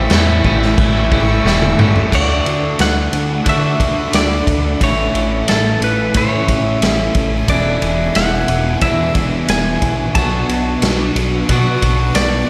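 A twangy, direct-recorded clean guitar carries the melody through tape echo over a blurred, slowly evolving granular pad, while a biting overdriven guitar riff trails reverse reverb and a dark fuzz guitar with ensemble chorus sits in the background, all at a straight 90 BPM in D lydian. A glossy, retro chorused synth bass and an up-front garage drum kit with a punchy kick and a rolled-off top play from the start, with a drum fill from 1.5 to 2.1 seconds leading into the next section. This dreamy, wistful shoegaze and dream pop passage moves through A7, D6, Amaj7, E7 and Bm7, soaked in plate reverb.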